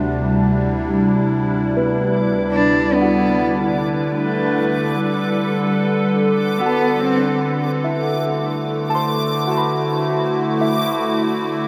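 A slow, straight 3/4 pulse at 74 BPM carries this serene ambient excerpt in D mixolydian, where a detuned, morphing wavetable pad sustains chords up front over C/D, G/D and D, joined by muted, felt-like synth keys playing soft, intimate arpeggios with chorus and delay. A dark cello, bowed sul tasto with vibrato and delay, sings a close, smooth melody until 7.4 seconds, while a reversed, granular texture fades in from 1.3 seconds as a bright, dreamy shimmer high above. All of it sits in a huge, wet reverb that lets every sound hang in the air.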